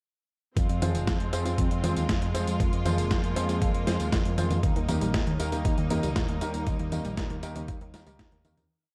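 A four-on-the-floor electronic kick, gritty and thumpy, drives a dusty, overdriven sampler-style disco beat of snare, closed hi-hat, high conga and tambourine in this short, nostalgic and danceable italo disco piece, over a sequenced sixteenth-note picked bass through an envelope filter, off-beat close-voiced stabs of clear grand piano with digital delay, and a biting symphonic string pad, while a very quiet, detuned analog pluck arpeggio joins at 4.6 s as the harmony moves from Fm to Eb, before a fade-out from 6.0 s.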